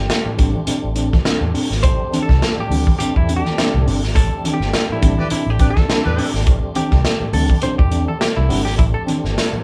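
Cool and driving, this funk excerpt with a light sixteenth-note swing sits on a single minor-eleventh chord as a clean, compressed semi-hollow guitar takes the lead over gritty, saturated breakbeat drums up front, a round, foam-muted fingered bass, fast-tremolo overdriven electric piano stabs, background tonewheel organ chords through chorus vibrato and a slow rotary speaker, and thin-skinned congas, while a distant, roomy horn section adds a brief second line from 5.2 to 6.3 seconds during a band accent, all captured live in a small room.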